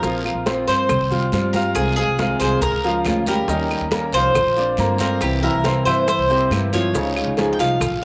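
A straight 4/4 pulse at 139 BPM drives this nostalgic, warm excerpt of Cuban son and guajira, cut from a longer piece. Up front, a bright, metallic Cuban tres carries the melody between G4 and G5, its picked double strings partly octave-doubled. A clear concert grand piano spreads open arpeggios with deep bass through a tape echo, while a dark, fingerpicked steel-string acoustic guitar adds accompaniment with audible finger squeak until 7.8 seconds. Beneath them, a woody, thumpy upright bass on gut strings plays pizzicato, and percussion fills the groove: very quiet ringing congas, very quiet tight high-tuned bongos struck with hard hands, a raspy, saturated guiro, grainy maracas in the background and background woody claves that join at 0.3 seconds. A wet spring reverb and small room ambience frame the sound, with the chords moving from Bbsus2 through Eb7 and C7 to Dbadd9.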